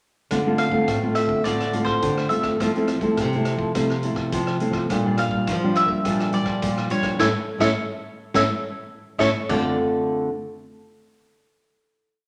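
From 0.3 s, an up-front thumb-plucked nylon-string guitar lays down syncopated chords over a second nylon-string guitar's samba bass figure, complete with finger squeak, and a big-room drum kit with dark cymbals and a punchy kick drives a samba groove at 105 BPM in D minor, before a mellow, round mandolin enters at 0.6 s with a motif-based melody in double strings, moving through Dm7, Fmaj7, Bb6 and A to a band accent at 7.2 s and a final Dm7 chord that rings into the wet large studio reverb, giving this short samba-choro piece a yearning, bittersweet mood.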